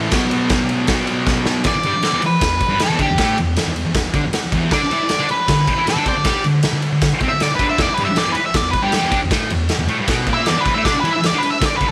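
Raw and menacing, this garage rock excerpt opens on a thick, double-tracked fuzz guitar riff and gritty, punchy acoustic drums in a pumping stone room, and after a drum fill at 1.3 seconds a dark octave-fuzz lead guitar with tape echo takes an up-front solo from 1.6 seconds to the end over chords moving through Cmaj7sus2, Em and D5.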